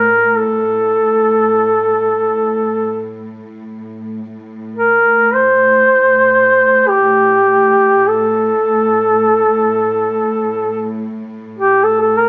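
Played in free time, this mournful, longing Caucasian folk lament in A phrygian sets an up-front solo duduk, roomy and distant with vibrato and scooped notes, singing a melody between G4 and C5 over a soft-attack chamber cello section holding a bowed sul tasto drone on A2 with light vibrato, all through light reverb and a small speaker sound in this 12.3-second excerpt cut from a longer piece.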